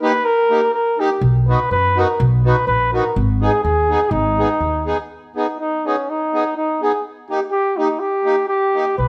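A swung 2/4 pulse at 124 BPM with a rubato give sets this bouncy, jolly alpine folk dance-band piece in G# minor, cut from a longer piece, where a mellow, distant flugelhorn sings the melody in a classical style with light vibrato over reedy, airy accordion accompaniment with slow beating, while a woody pizzicato upright bass joins at 1.2 s, drops out at 4.9 s and briefly returns at 9.0 s, the whole set in light reverb.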